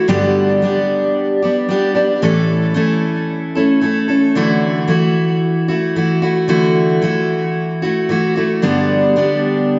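A full-bodied, picked steel-string acoustic guitar sits up front and plays alone from 0.0 to 9.8 s, moving through G, A, Dadd9 and back to G in D major at 112 BPM with a light sixteenth-note swing. The mood is heartfelt and sunny, a pop fragment cut from a longer piece. Delay on the guitar and a lush hall reverb soak the mix in a dreamy haze with a softened top end.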